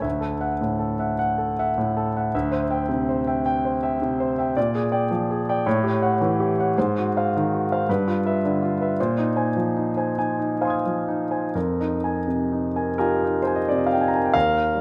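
A clear concert grand piano plays alone throughout this short impressionist classical passage, cut from a longer piece, its sound intimate and polished, with deep bass, long sustain and the mechanical noise of the action audible up front. The mood is hazy and luminous, moving in a slow, rubato 6/8 at roughly 41-56 beats per minute counted in dotted quarters. The harmony drifts through colorful chords, opening on Dadd9 and C/D, then sliding through Bb6, A6, Ab6 and G6 before settling on Bb9sus4 and, at 11.5 seconds, a closing Fm11. The writing spans the keyboard from D2 up to Ab6, all heard through close, detailed microphones. A moderate scoring-stage reverb of about 1.5 seconds gives the piano a gentle halo of space.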